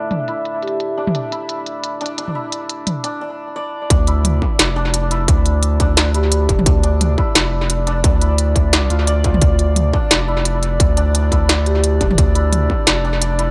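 A swung half-time drum and bass groove drives this tense, dark passage from a longer piece, with an up-front industrial kit of clanging snare, smooth filtered hats and toms entering at 0.1 seconds over a nasal, detuned analog pad with chorus and sidechain pumping, and a shimmering hammered santur playing arpeggios through analog delay under a filter sweep. At 3.9 seconds the drop lands as a distorted electronic kick and a thick, tube-saturated sine sub bass enter. A mellow soft-mallet vibraphone with sampler grit and tape echo sounds a brief G4 in the background three times, at 0.6, 6.1 and 11.7 seconds. The mix sits in an echo-heavy digital ambience, shaded by a low-pass filter.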